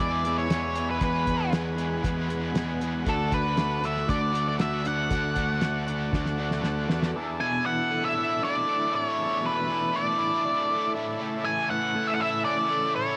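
A straight 4/4 groove from a cloth-damped, thuddy drum kit with a fat snare and tight kick drives this trippy, hazy psychedelic rock excerpt, where a dark octave-fuzz lead guitar with tape echo carries the melody over a double-tracked overdriven electric guitar riff pulsing with harmonic tremolo, a buzzy combo organ holding vibrato-tinged chords in the background, and an up-front fuzz picked electric bass, until the drums play a fill from 6.1 s and both drums and bass drop out at 7.1 s, leaving the guitars and organ in a light studio reverb.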